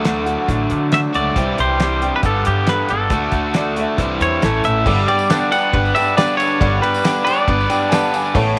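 Nostalgic and open-road in feel, this short folk rock and heartland rock excerpt moves at 137 BPM in a straight 4/4, with picked steel-string acoustic guitar showing finger squeak, a crunchy, double-tracked overdriven guitar riff sitting up front, woody pizzicato upright bass and a damped 70s drum kit with a fat snare and tight kick all running through the chords D, Cadd9, Gadd9 and A before landing on G. A bright, twangy electric guitar carries the melody from 0.9 seconds with tape echo, while a clear upright piano with audible action noise adds a second line in brief spots. From 4.8 seconds a very quiet grand piano with short sustain joins, and a jingly tambourine sits in the background, all within an audible studio ambience.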